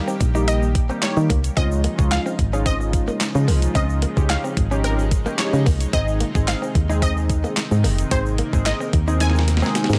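Carefree, upbeat dance-pop at 110 BPM in Ab major, where a punchy, round FM bass and a thumpy, sampler-style 12-bit drum machine sit up front with handclaps, hi-hat and snare, driving sidechain-pumped chords from a glossy, retro chorused polysynth and a lush, thick unison pad in the background, while a bright, detuned unison pluck melody with phaser and delay floats over a picked, compressed clean electric guitar riff and a grainy tube shaker, all in a dry mix moving from Eb to Dbadd9 to Ab before a drum fill at 9.2 seconds closes this excerpt.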